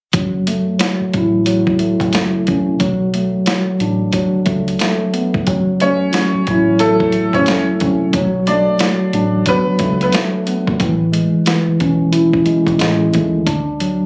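A bright, woody upright piano with audible action noise and tape echo carries the melody from 5.8 to 10.1 seconds over a mellow tine electric piano tinted by cassette tape, a deep, round dub bass and a compressed, pitched-down boom-bap sampler kit with a thumpy kick and high-tuned snare, giving this gritty, moody hip-hop excerpt the sound of a phone recording in a reverberant club.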